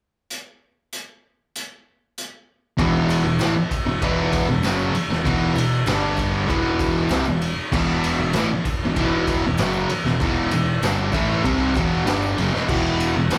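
A straight 4/4 beat at 97 BPM opens this menacing, raw garage rock cut, taken from a longer piece, with the drum kit playing alone from 0.3 seconds on kick, snare, hi-hat, ride and crash. The kit sounds gritty and saturated, with a punchy kick, a medium-tuned snare and a rolled-off top, sitting up front in a small room. At 2.8 seconds a bright, double-tracked fuzz guitar crashes in with a compressed, distorted riff in E minor, moving from E5 to G5 and then Em. A growling, overdriven electric bass enters at the same moment and stays in the background beneath the guitar. A jingly tambourine joins very quietly at 3.1 seconds. The whole band plays live together in one room with light reverb, giving the track a rough, immediate edge.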